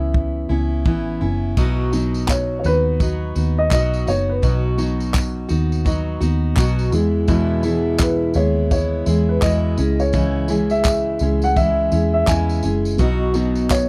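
A gently swung sixteenth-note feel in 4/4 carries this sunny, heartfelt acoustic pop piece, cut from a longer work. A dark, woody upright piano with a boxy tone carries the melody over a full-bodied, up-front steel-string acoustic guitar, picked on a jumbo body with audible finger squeak. A round, foam-muted vintage electric bass sits beneath them, while an airy, polished country drum kit adds a punchy kick, crash cymbal and handclaps. A jingly, band-limited tambourine joins at 1.6 seconds as the harmony moves from Aadd9 to B, then on through E and C#m. At 13.0 seconds a reedy, mellow electric piano with a fast tremolo slips in for the closing B chord, and the whole piece has the dry, close sound of a 1970s-style studio.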